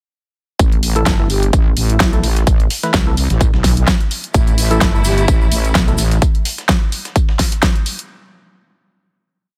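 A dry, close mix with little reverb opens straight into a drop of bouncy, aggressive bass house at 128 BPM in A minor, set in 4/4 with a light swing on the sixteenths. An overdriven electronic kick pounds four-on-the-floor up front, layered with a big-room dance kit whose huge, overdriven snare and programmed hats carry the backbeat. A very quiet, gritty sampler-style soul kit adds a looped breakbeat with edits, tambourine and medium-tuned snare underneath. The heavy, resonant sawtooth wobble bass pumps against the kick with chorus and saturation, shifting its wobble speed through modulated phrases, while a hollow, percussive organ stab with 12-bit sampler grit and delay fires syncopated chord stabs moved in parallel from 1.0 seconds. A breathy, warbling flute-like synth lead drifts in the background in short phrases with vibrato and delay. From 4.3 seconds a lush, distant studio string section sustains chords alongside a grainy egg shaker playing hand-played sixteenths in a large room, before the drums carry the piece to its close at 8.1 seconds.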